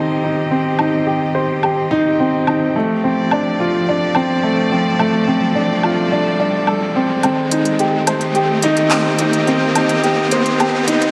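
Piano and strings electronica with a melancholic, moving feel, this cut from a longer piece builds throughout under a filter sweep, with a clear, intimate grand piano riff carrying tape echo and audible action noise over sustained, vibrato-rich string quartet chords, all moving from Cm through Dm7 to Cm/Eb. A barely audible sub bass sits beneath, while an organic electronic drum kit of overdriven handclaps, hi-hat and woodblock enters at 0.8 seconds and a background riser joins at 3.0 seconds. The sound is bathed in a wet echo chamber reverb.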